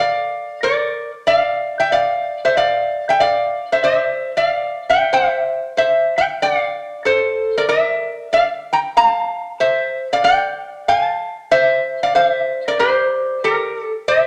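A gently swung 94 BPM lilt carries this sunny, relaxed Hawaiian excerpt, where a lone metal-body resonator slide guitar, played up front with fingerpicks and a bright, nasal, metallic tone, glides between G4 and Bb5 over chords moving from Bb through Dm9/C, Bbmaj7 and Dm7 to C5, all set in a large studio reverb for 14.3 seconds.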